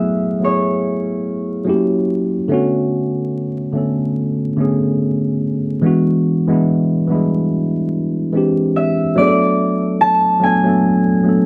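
R&B with a soulful, late-night mood, this short cut from a longer piece moves at an unhurried pace with a gentle sixteenth-note swing. A tine electric piano carries the accompaniment throughout, its worn, slightly out-of-tune tone coming through a combo amp and colored by a phaser, sitting up front in the mix. A concert harp takes the melody, bright and thumb-plucked with a ringing, acoustic quality and a slapback echo, heard at the opening and again from 8.8 seconds to the close. The chords drift through lush extended harmonies, from F#m11 and F#7b9 into Bm9 and E9, with an altered E7 leading to a Bm7 where a new section begins at 9.2 seconds. The sound is dry and close, in the manner of a 1970s studio, with light reverb, soft vinyl crackle and a faint mains hum adding to its vintage character.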